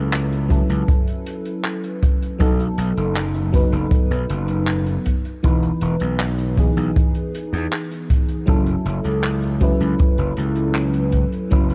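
Melancholic and woozy, this short vaporwave excerpt drifts at 79 BPM in F# dorian, cycling through F#m7, B7 and Emaj7 with a dark, cassette-worn production flecked with lossy compression artefacts. A lush, dreamy FM electric piano with a soft pad layer carries the chords up front with subtle chorus and analog delay, while a growly, overdriven slap bass punches beneath it. A small-room jazz kit of handclaps and hi-hat comes in at 0.1 seconds, followed by a boomy kick at 0.5 seconds, both roughened by vintage 12-bit sampler grit.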